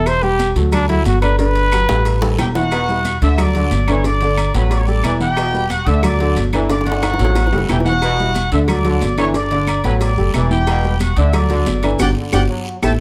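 Close, detailed and nearly dry, this festive, danceable salsa excerpt at 181 BPM opens with a brilliant, forceful solo trombone up front over a slightly detuned upright piano, a dark, woody pizzicato upright bass and a background bed of high-tuned congas, tight bongos and cowbell, ringing agogo bells and timbales, woody claves, raspy guiro and grainy maracas. A distant, roomy trumpet section then takes the melody at 2.4 seconds and is joined at 2.7 seconds by a tight trombone section beneath it, with drum fills punctuating the groove and a band accent closing at 12.0 seconds.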